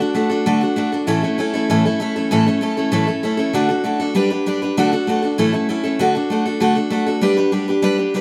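A straight 4/4 pulse at a rowdy, rollicking 195 BPM drives this short rock excerpt in D major, where a lone picked steel-string acoustic guitar sits up front with a bright, full-bodied dreadnought tone, fresh strings and audible finger squeak, spanning A2 to B4 through tape echo and moderate studio reverb in a live-room recording, moving through D, A and G chords before a new section arrives at 6.0 seconds and runs to 8.2 seconds.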